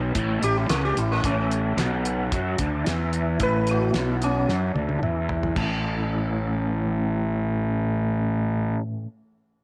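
Trippy and hazy, this short psychedelic rock excerpt moves at 111 BPM in a straight 4/4 in A major, cut from a longer piece. A crunchy, double-tracked overdriven guitar plays the riff through a rotary speaker and low-pass filter, with a filter sweep running across the first 5.6 seconds, while a fuzz-laden fingered electric bass sits up front with a growly, overdriven tone. A mellow, buzzing sitar, plucked with a plectrum and shimmering with sympathetic strings, carries the melody as a solo under a slapback echo from 0.4 until it stops at 4.7 seconds. Beneath it, a cloth-damped, thuddy acoustic drum kit with dark cymbals, a fat snare and a tight kick plays a fill from 4.5 to 5.6 seconds before dropping out at 5.7. The harmony rests on an Aadd9 before settling onto plain A at 5.6 seconds, and once the drums stop, guitar and bass carry on by themselves, all set in a light reverb and small room ambience.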